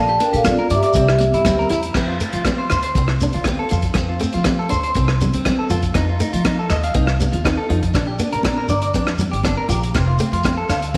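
Highlife guitar band music at 120 BPM in F major, carefree and danceable, in which an up-front, ringing vibraphone with slapback echo states the melody only until 1.7 s, while a clean electric guitar with spring reverb plays arpeggios over a woody, boxy old ladder-braced acoustic guitar in the background, a thumpy pizzicato upright bass, a muffled lo-fi vintage drum kit with tight kick, rim click, hi-hat and crash, bright high-tuned congas and a grainy shekere, all set in a small room with echo-chamber reverb.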